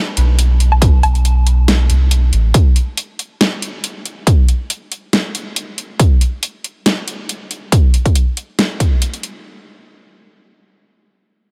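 A round, soft sub bass with a square-wave edge and tube saturation opens this cavernous, meditative deep dubstep fragment at 0.2 s, alongside a layered electronic kit of metallic hats, a huge snare and woodblock. A punchy electronic kick joins at 0.8 s, and both drum parts sit up front with a tape-warmed character, while the deep, sustained bass falls away at 2.5 s. The half-time groove carries a light swing in a dry space, cut from a longer piece.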